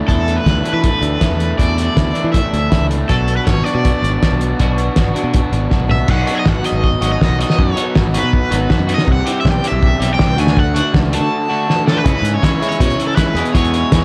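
A straight 4/4 pulse from a muffled, cloth-damped drum kit with a fat snare and tight kick sits up front in this wistful, jangly indie rock excerpt, as two crunchy overdriven guitars carry a riff and a high melody shimmering with harmonic tremolo, a biting guitar drenched in lush chorus sits in the background, and a punchy, growly picked bass anchors the dark production until a worn, slightly out-of-tune tine electric piano and a barely audible silky string pad join at 12.0 s.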